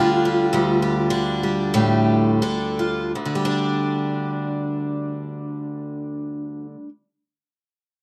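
Haunting and melancholic, this short folk fragment cut from a longer piece features a lone picked twelve-string acoustic guitar in D minor, played rubato at a loose 78-111 BPM and slowing over its first 3.2 seconds before moving from Dm to Dsus4. The octave-doubled strings sound shimmering and fresh yet slightly boxy, sitting up front in a modest small-room reverb with a rough home-demo character, and the guitar falls silent at 6.9 seconds.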